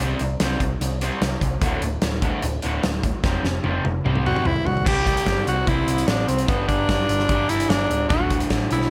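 Sunny and swaggering, this classic rock excerpt at 148 BPM opens with a raw, overdriven, double-tracked garage guitar riff over a round, punchy hollow-body bass and a big, dark rock kit with a fat snare and punchy kick, whose fill at 3.2 seconds ushers in a raspy, gritty tenor saxophone solo with scooped notes and slapback echo from 4.3 seconds, all under light reverb.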